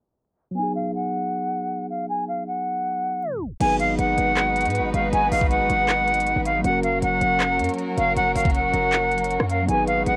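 A dry, crackling cassette home recording opens with a filter sweep from 0.6 seconds and a tape stop into this melancholic, brooding half-time trap hip hop piece at 158 BPM in G# dorian, where a mellow, clean tine electric piano and an airy silver concert flute with vibrato, sitting up front, carry the opening over G#m7, until at 3.6 seconds a knocking trap drum kit with crisp hats, handclaps, rim clicks and crash, a punchy, heavy 808-style bass and an intimate bowed chamber string section with light vibrato join, the harmony moving to F# at 6.6 seconds.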